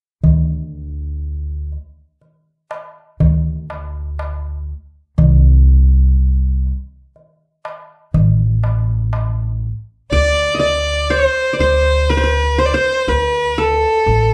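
A festive, stately Turkish makam ensemble moves in 10/8 at 122 BPM counted in eighths, with a woody, growly pizzicato upright bass up front throughout and a crisp, small metal-shell darbuka driving the opening until 9.4 s. At 10.1 s a clear, focused bowed violin takes the melody with vibrato, joined by a bright-edged qanun played with fingerpicks as a softer second line. The band plays live in one large studio with a moderate reverb, and the recording is cut from a longer piece.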